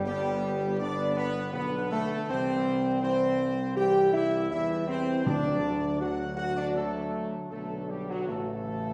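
Classical ceremonial fanfare in G major at 80 BPM, regal and solemn, cut from a longer piece and heard from further back in a wet scoring-stage reverb. A trumpet section with light vibrato and a smooth top carries the melody over mellow, up-front French horn chords, punchy trombone chords sitting in the background, and a distant, roomy tuba bass. Timpani struck with hard mallets sound close and dry, appearing at the start and again from 5.3 to 6.3 seconds as the harmony moves from G through C and D to A.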